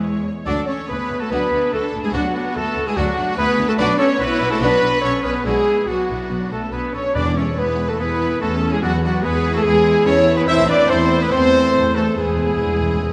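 A heroic adventure film score cut from a longer piece, triumphant in mood and driven by a straight 4/4 pulse, with a lush, vibrato-rich violin section singing the melody over rich bowed violas, cellos and double basses while a quieter second violin line, pure crisp flute, smooth oboe and a very quiet clarinet (from 0.5 seconds) add supporting lines. Tight French horns and close-miked trombones hold sustained chords as a clear, distant trumpet punctuates with stabs. Round, soft-mallet timpani appear briefly at 7.2 seconds and return with a fill at 12.2 seconds, all set in a wet scoring-stage reverb with a soft-topped sound.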